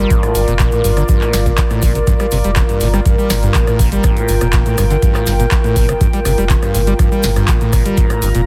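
A squelchy, resonant sawtooth acid bass riff with overdrive and a digital delay drives this hypnotic, gritty acid house cut over a Gm7 chord, joined by a round sine sub bass, a dark analog pad with chorus and phaser, a warbling, nostalgic lo-fi pad, an up-front deep electronic kick, a booming analog drum machine with crisp snare, metallic hats, handclaps and rim clicks, and a grainy egg shaker in the background, with the basses and pads pumping under sidechain compression in a heavily compressed, radio-like mix with light reverb.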